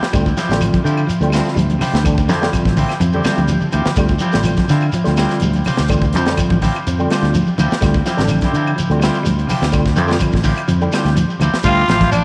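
Set in a moderate echo-chamber studio ambience, this funky, driving afrobeat excerpt in D minor at 125 BPM rides on a tight funk kit with a high-tuned snare and a drum fill at 3.0 seconds, a dark, round fingered bass, grainy shekere, woody claves, damped background congas, quiet hollow-body guitar arpeggios, twangy slightly broken-up guitar stabs with tape echo and a soft, flute-like tonewheel organ with key click through a fast rotary speaker, before a raspy, growling tenor saxophone takes the melody up front at 11.6 seconds and a clear, very quiet trumpet adds a second line at 11.7 seconds.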